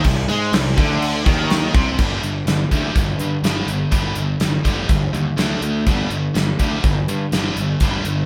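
Straight 4/4 hard rock with a driving, menacing feel, built on a polished gated 80s drum kit with a tight kick, medium-tuned snare and bright cymbals up front, a scooped, high-gain, double-tracked guitar riff, and a growly picked bass thick with fuzz, while a warm overdriven second guitar riffs in the background only until 2.0 s, the band playing live in one room with moderate studio reverb in a short cut from a longer piece.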